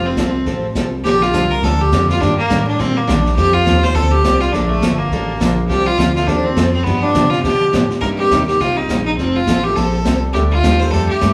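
A clear, biting fiddle with light vibrato carries the melody over picked, full-bodied steel-string acoustic guitar and a smooth, gliding synth bass in this cheerful western swing excerpt at 206 BPM, as a vintage brush kit with a high-tuned snare and punchy kick joins at 0.2 seconds, a bright, slightly detuned upright piano enters very quietly at 6.2 seconds, and the band plays live together in a wet studio reverb.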